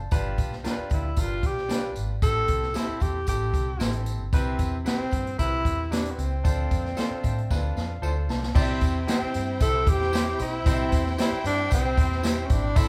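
A breathy tenor saxophone sits up front, carrying the melody from 0.9 s with a mellow, jazz-style tone, light vibrato and scooped notes in this uplifting, warm slice of uptempo 1960s-style soul at 114 BPM in C major. Beneath it, a bright concert grand piano supplies polished accompaniment, while a vintage muted fingered electric bass gives a dark, round, punchy foundation. An acoustic drum kit with a punchy kick and medium-tuned snare drives the straight 4/4 groove, joined by a jingly, band-limited tambourine and a twangy, slightly broken-up electric guitar adding picked stabs in the background. The chords move through G7, Am7, Cmaj7 and Dm7, and a piano fill and drum fill lead into a new section at 8.6 s, where the harmony settles on C. At 8.5 s a lush, bowed violin section enters in the background with a smooth second line, and the whole band sounds as if playing live together in a large studio room with moderate reverb.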